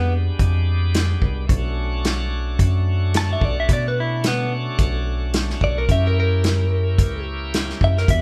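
Straight-eighth soul blues with a mournful, brooding mood, played by a band live in one room with a moderate large-studio reverb in this short cut from a longer piece. A clean, direct-recorded electric guitar carries the picked, compressed melody up front, while a bright, shouting tonewheel organ with key click, light overdrive and a slow rotary speaker fills in the accompaniment beneath it. A bell-like tine electric piano takes the bass line, and a soul drum kit with a tight kick, medium-tuned snare and rolled-off top joins at 0.4 seconds over chords moving from Fdim7 to Bm7 to F#7b9.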